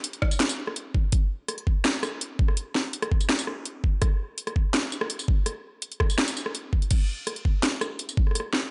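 Cinematic and spacious, this short drum and bass passage runs at 166 BPM in 4/4 with a half-time feel. A layered, overdriven kit sits up front from the start, its cracking snare and bright hats joined by crash cymbal, rim click and tambourine, while a knocking electronic kick, also overdriven, enters at 0.2 seconds. Both parts carry the character of being re-recorded in a small room, and a light reverb and a dulled top end give the whole mix a slightly veiled sheen.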